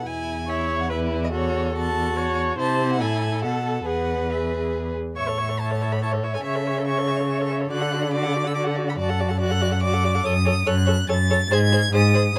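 Cheerful and graceful, this quick classical-period movement for string quartet is cut from a longer piece and moves at 142 BPM in 3/4 with a straight feel. Two bowed violins begin together: the first carries a rich, vibrato-laden melody, while the second plays a focused supporting line beneath it. The cello joins almost at once with the bass, and the viola enters at 0.5 s with warm, even accompaniment. The cello stands up front, its soft attack, portamento and expressive vibrato giving the low line real character. The music opens in E major and moves to A major at 5.2 s, where the harmony passes through D before reaching G#. Close, detailed microphones and little reverb keep each single player clearly heard in a dry, intimate space.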